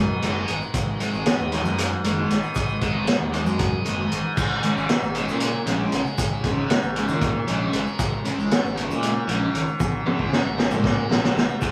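Lurching along in a straight 7/8, this trippy, hypnotic slice of psychedelic rock is cut from a longer piece and recorded with the rough, close feel of a small rehearsal room. A double-tracked, compressed fuzz guitar carries the picked riff through distortion and phaser, while a round, punchy fingered bass with overdriven fuzz holds the low end, and a buzzing, shimmering tanpura drone sits beneath it all. In the background, a bright tonewheel organ holds sustained chords with a shouting edge, key click and a slow rotary speaker, moving from G#m to C#m/G# at 4.4 seconds. The vintage drum kit, up front and mid-forward with dark cymbals, a medium-tuned snare and a rolled-off top, enters at 0.2 seconds, joined at 0.5 seconds by a grainy, distant tube shaker. A drum fill starting at 9.8 seconds closes the passage.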